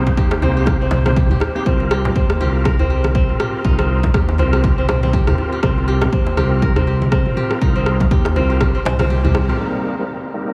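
Driving and earthy, this afro house excerpt moves at 121 BPM in 4/4 with a swung sixteenth-note feel, circling between Cm7 and Bbsus2/C. A crisp, ringing kora plays fingerpicked arpeggios from the start, set beside a reedy tonewheel organ whose stabs carry key click, chorus vibrato, a fast rotary speaker and a low-pass filter, both parts bathed in diffuse ambient delay and pumping against the kick. Underneath, a smooth, mellow synth bass blends sawtooth and square tones with a fast attack and vibrato, pumping in the same way. A punchy, overdriven electronic kick heads the rhythm, backed by a deep house kit with rim clicks and toms, low-tuned congas struck with hard hands and a close, dry djembe played with soft hands, all set in a small room. Near the end the kick drops out at 9.1 seconds, a drum fill runs into a band accent at 9.3 seconds, and the organ and kora ring on alone until 10.5 seconds.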